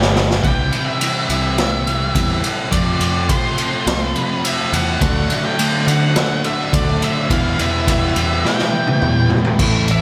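A raw garage drum kit sits up front in this cathartic, angsty quiet-loud alternative rock excerpt, its punchy kick, medium-tuned snare, crash, ride and toms sounding saturated and gritty with a rolled-off top, opening on a fill before dropping into a half-time feel from 0.4 seconds and fill again from 8.5 seconds. A growly fuzz-driven fingered bass holds the low end with overdriven weight. Behind it, a bright high-gain guitar riffs throughout, joined by a compressed overdriven guitar riff that briefly sounds at the start and returns at 5.0 seconds. A dark octave-fuzz lead guitar carries the melody high above, coloured by distortion, slapback echo and analog delay, while a very quiet, twangy twelve-string electric guitar picks clean arpeggios beneath. The chords move from C to F, D and Em, and a lush hall reverb blended with a small room gives the whole a big arena sound.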